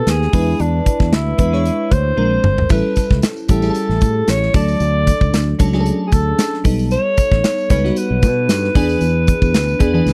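Urban and breezy, this short excerpt of polished 1980s jazz-funk pop moves at 114 BPM in D major with a light sixteenth-note swing, as a breathy, subtoned alto saxophone carries the melody with scooped notes over a sparkling, bell-like FM electric piano treated with analog chorus. A fingered electric bass sits warm and direct beneath an up-front studio drum kit with a punchy kick and medium-tuned snare, whose fill at 2.2 seconds leads to a jingly tambourine entering softly in the background at 2.7 seconds. The dry, close recording frames chords moving from E7 through Bb9, A7 and Dmaj7 to B7b13 before returning to E7.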